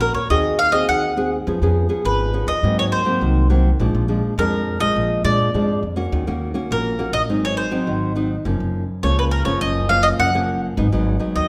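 An up-front picked mandolin with doubled strings carries the yearning, lively melody in this 11.5-second fragment of samba and choro at 103 BPM in straight 4/4, over a fingerpicked classical nylon-string guitar with a woody old-string tone and a growly pizzicato upright bass, moving through chords such as Ab9, Ebm7 and Gbmaj7 inside a reverberant recital hall.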